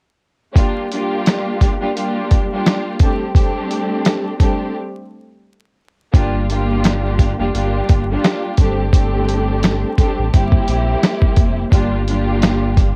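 Tough and reflective, this boom-bap hip-hop fragment at 86 BPM rides a swung 4/4 groove from a gritty, compressed sampler-style drum kit with a thumpy kick and medium-tuned snare, while a lush, bowed string section with expressive vibrato and a smooth top carries cassette-filtered chords over G, a break arrives at 4.7 seconds, and a deep, full sine sub bass with octave enters at 6.1 seconds, all in a dry home-cassette sound dusted with vinyl crackle.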